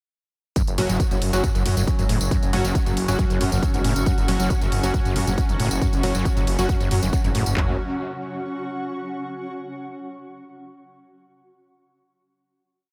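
A four-on-the-floor kick drives this hypnotic, intense peak-time techno piece at 137 BPM, where a heavy kick, claps and floor toms join smooth programmed hats, ride, tambourine and low toms under a thick, menacing rolling saw bass in F#, a squelchy, gritty acid line with accents and slides, sparse echoing supersaw chord stabs and a ring-modulated drone with moving overtones. Everything except the kick-and-clap kit pumps through the drop from 0.6 seconds, with the drone arriving at 1.2 seconds and a cloudy granular pad entering at 2.1 seconds before it carries the final chord from 7.6 to 9.3 seconds in light digital ambience.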